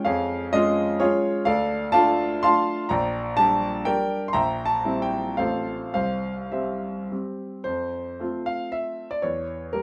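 Classical romantic triple-time dance for solo piano, rustic and proud in mood, moving with rubato and dotted rhythms through a short cut from a longer piece. A baby grand carries everything, its smooth, vintage tone sitting up front in light reverb and ranging from deep bass to bright upper notes. After a first passage, a fresh phrase begins at 7.7 seconds and ends on a tense diminished chord.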